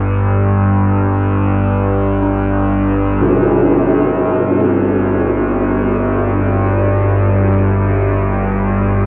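A low, nasal drone opens this fragment of dark ambient music, up front, swelling in slowly and sustaining, its sawtooth and sine tones swept by moving overtones and thickened with chorus and built-in reverb. The mood is cavernous and ominous, drifting in free time. At 2.2 seconds a very quiet, detuned FM synth bell enters with eerie, inharmonic arpeggios; its tone is mellow and vintage, with fast-attack, decaying notes and long releases colored by chorus and phaser. A brief tam-tam hit lands at 3.2 seconds, its bright acoustic shimmer from a live room dulled by a low-pass filter. The whole recording sits in a huge, wet reverb with a tail of 8.4 seconds, and worn cassette tape lends it a warbly pitch drift.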